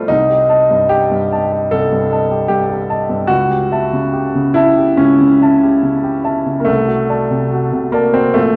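Moving in a rubato 4/4 at roughly 70-77 BPM, this stormy, brooding excerpt from a romantic classical character piece features a clear, woody upright piano alone, up front and polished, spanning Bb1 to A5 through chords of Am7b5/C, A7/C# at 3.3 seconds and D7/C at 6.7 seconds, all set in a wet recital hall reverb with a 1.8-second decay within a dark, warm production and tuned to A4 = 441 Hz.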